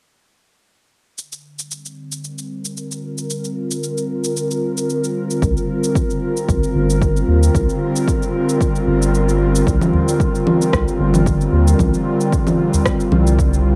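A lightly swung 113 BPM groove in 4/4 sets up this organic downtempo excerpt, with overdriven, tape-worn electronic shaker, congas and rim click from 1.2 s, joined at 5.4 s by a punchy, overdriven electronic kick and a round, dark analog bass with sidechain pumping. An airy, breathy, up-front pad holds soft, warbling, detuned chords starting on C7(no3), colored by chorus, plate reverb, sidechain pumping and a filter sweep, while a deep, close and dry udu enters at 9.9 s, shortly after the kick briefly drops out. The mood is warm and meditative, with a vintage home-cassette character in a moderate room.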